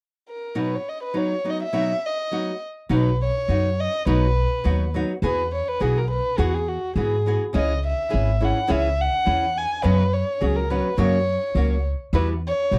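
Mexican folk in the mariachi tradition, this short cut from a longer piece feels romantic and proud, moving in a straight two-beat metre. A single bowed violin carries the melody from 0.3 seconds, its dark, woody tone played sul tasto with a soft attack, vibrato and a smooth top, set up front with slapback echo. A fingerpicked nylon-string guitar joins almost at once, small and bright with the crisp sound of fresh strings. At 2.9 seconds an upright bass enters, plucked on steel strings with a thumpy, warm low end that sits up front alongside the other two. The harmony moves from B through Eadd9 and C#m to a suspended F# that resolves before closing on Emadd9. The dry, close sound recalls a 1970s studio, with very little reverb around the trio.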